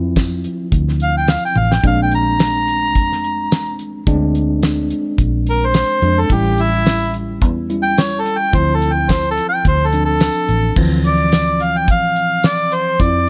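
A straight-eighth soul blues groove at 108 BPM in D minor, lightly swung on the sixteenths, carries this smoky, soulful fragment, where a damped 70s drum kit with a fat snare, tight kick and dark cymbals fills at 1.6 seconds beneath a round, foam-muted vintage bass and a worn, slightly out-of-tune tine electric piano with gentle overdrive, while a clear, close-miked harmonica with light vibrato enters at 1.0 second and takes a solo from 10.8 seconds over a dry room with a faint mains hum, moving through Dm7, Bb7 and A7.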